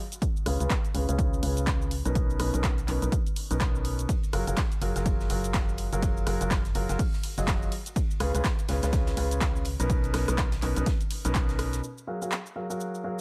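Piano house at 124 BPM in F# major with a swung, feel-good and joyful lift, built on a bright, up-front concert grand piano riff carrying sidechain pumping, a low-pass filter and digital delay, a hollow, organ-like FM bass that also pumps, a punchy dry electronic kick, an analog drum machine of handclaps, hi-hat, rim click and shaker, and a very quiet, airy acoustic kit of hi-hat, ride and snare entering at 4.1 seconds, all moving through C#7, Bmaj9 and F#maj9 in a small room before the kick drops out at 11.5 seconds in this short cut from a longer track.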